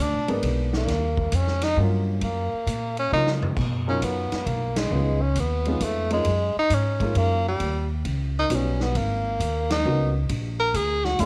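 A swung waltz at 134 BPM in 3/4, this short cut from a longer small-group jazz piece in Eb minor carries a cool, smoky mood through light reverb and the soft haze of a home cassette recording. A breathy tenor saxophone leads up front from the start, its subtone voice scooping into notes with vibrato as it plays solo over the band. Beside it, a woody pizzicato upright bass on steel strings sits forward in the mix, while a dark, mellow baby grand piano joins at 0.3 seconds with intimate comping, its short sustain and audible action noise giving it a close, natural feel. The drum kit, also entering at 0.3 seconds, brings a big-room swing with a medium-tuned snare, punchy kick, hi-hat, ride, crash and toms, and a fill from 3.1 to 3.6 seconds leads into the second section. That section moves through rich harmony from Bmaj9#11 and Db9 to Eb7alt and a closing Bb7, with band accents landing at 4.7 and 9.6 seconds.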